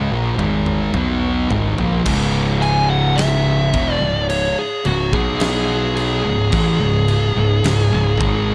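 Dark, heavy and fuzz-soaked, this short cut from a longer stoner and doom metal piece sits in a studio reverb and crawls along at 54 BPM in a straight 4/4, its mood ominous and brooding in C# dorian. Two thick fuzz guitars grind out the riff from the start, sitting in the background alongside a growly, punchy fuzz bass whose overdriven, direct-and-amped tone cuts through brightly in the low register. A big rock drum kit enters at 0.4 seconds with an acoustic, big-room sound, a fat snare and a punchy kick, its opening fill carrying the first passage alongside crash cymbal and toms. At 2.6 seconds a compressed, up-front fuzz lead guitar begins a solo that rides above the riff through to the end. The harmony moves from A#5 to C#m, then briefly to B5 before returning to C#m.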